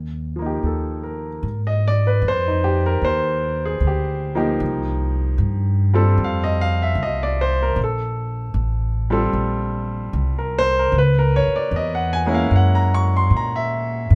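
Jazz ballad with a smoky, intimate mood and a gentle swing, cut from a longer piece. A woody, growly pizzicato upright bass opens at 0.0 seconds, and a clear, natural grand piano joins at 0.4 seconds, both placed up front in a moderate club reverb. The accompaniment moves through lush colors like Ebadd9, Absus2, Cm7 and Bbsus2 before drifting to C#m and F#9.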